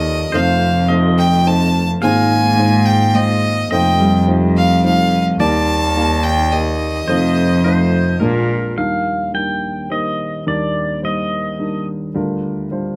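Acoustic folk-pop ballad in a hopeful, intimate 3/4 at 106 BPM, where a biting, bright violin carries the melody over a rich, reedy gut-string cello bass, dark and mellow grand piano chords with audible action noise, and very quiet ringing fingerpicked Celtic harp arpeggios, while a clean, twangy pedal steel guitar with volume swells and slide plays a second line before taking a solo from 8.8 s, as the music settles into Eb major, all captured by close, detailed microphones with little reverb.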